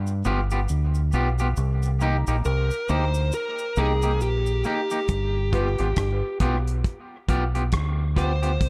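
A dark, lightly reverberant mix frames this spacious, deep dub reggae fragment at 68 BPM with swung sixteenths, where a round, punchy fingered electric bass and a soft cabasa sit beneath a twangy, slightly broken-up rhythm guitar with dub echo, a smooth overdriven lead guitar with dub echo enters up front at 2.5 seconds, a damped, tight 70s drum kit of kick, hi-hat and rim click arrives at 5.1 seconds as the chords return to G7, and a mellow, woody upright piano stab with dub echo flickers in the background at 5.5 seconds.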